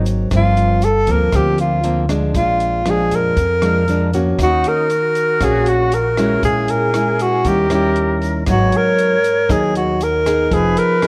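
Melancholic and wistful, this bossa nova fragment moves at 118 BPM in a straight 4/4, settling into Eb minor from 4.4 seconds, cut from a longer piece. A breathy alto saxophone carries the melody up front, its subtone, soft attack and light vibrato giving it a whispered, intimate jazz voice set in plate reverb. Beside it, a fingerpicked nylon-string guitar plays classical-style accompaniment, also up front, while a woody, growly upright bass holds down the low end. A compact cocktail drum kit keeps time on hi-hat, rim click and a dry, punchy kick, with a grainy tube shaker sitting very quietly beneath. At 4.4 seconds an airy silver concert flute joins with a tongued second line, its vibrato slightly unsteady, as the harmony moves through Ebm7, Eb7b9 and Abm7. The whole recording has the worn, warbling pitch drift of old cassette tape inside a moderate large studio reverb.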